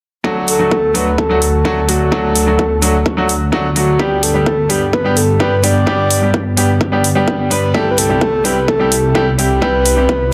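A breathy, flute-like synth lead carries the melody from 0.2 seconds in this triumphant, anthemic cut from a longer festival progressive house track, its soft attack, vibrato and chorus giving it an airy glow over a digital delay. At 128 BPM in a straight 4/4, an up-front baby grand piano plays clear, short-sustained accompaniment, pumping with the sidechain and trailing dub echo. A lush unison pad of thick, detuned sawtooth tones sustains the chords beneath, entering at 0.5 seconds with a slow attack, long release and its own sidechain pulse. A punchy, layered electronic kick and metallic hi-hats drive the groove, with the hats sitting close to the front and both re-recorded in a small room. The harmony moves from D to G at 4.0 seconds and on to C at 7.7 seconds, all within a light digital ambience and a dense, heavily limited modern master.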